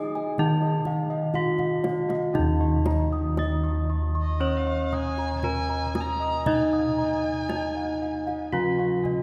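Awash in a cathedral-like reverb, this serene, shimmering gamelan passage, cut from a longer piece, sets bronze metallophones ringing together in a melody line, a lower accompaniment and a high arpeggiated figure, one struck with a horn mallet for an airy, brilliant sheen and a second with a wooden mallet, its paired tuning producing shimmering beats. Round, beating bossed gongs add a second arpeggio layer and a deep bass line set in the background, while a tight, close and dry kendang played with soft hands enters at 0.2 seconds and plays a fill from 1.3 to 2.3 seconds. At 4.2 seconds a distant, earthy bowed erhu joins as a second line, its rich tone shaded with light vibrato and portamento.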